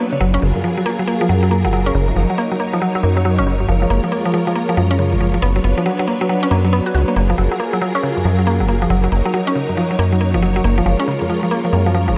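Glitchy and intricate, this swung IDM excerpt sets woody, round mallet-like synth pluck arpeggios, bright and up front with chorus, phaser and delay, over silky, vintage string-machine chords with ensemble chorus and a rubbery, resonant acid bass with a filter sweep, moving through a ninth-and-seventh chord progression in a dark, lightly reverberant mix.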